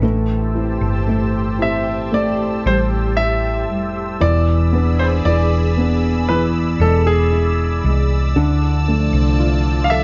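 A round, punchy hollow-body electric bass sits up front in this emotional, longing pop ballad excerpt. It anchors a warm grand piano accompaniment, a thumb-plucked nylon-string guitar in the background with digital delay, and a thick, detuned unison pad of slow-attack chords colored by chorus and phaser. At 1.6 seconds a brilliant, polished concert grand enters with the melody over chords moving from Am7 to E7 to Dmadd9, all set in light small-room reverb with a softened top end.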